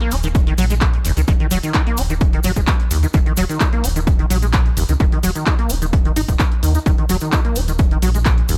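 A punchy, overdriven electronic kick sits up front in a digital ambience, re-recorded in a large room, driving this hypnotic acid house excerpt. A squelchy, resonant sawtooth acid bass riff with filter sweeps, tube saturation, chorus, delay and sidechain pumping rides over a round, deep, detuned analog bass that also pumps and saturates, while a tape-warm analog drum machine adds handclaps and hi-hat. A grainy, bright cabasa rattles distantly in the background throughout.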